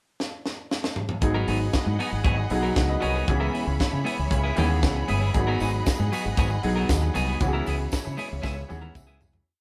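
A punchy, bright fingered electric bass drives this glamorous disco piece, its syncopated line with muted ghost notes riding a tight funk kit's four-on-the-floor beat and fills, while choppy clean guitar, brilliant grand piano push chords, lush distant strings and a jingly tambourine from 5.6 s fill out a live-room groove that fades from 7.4 s.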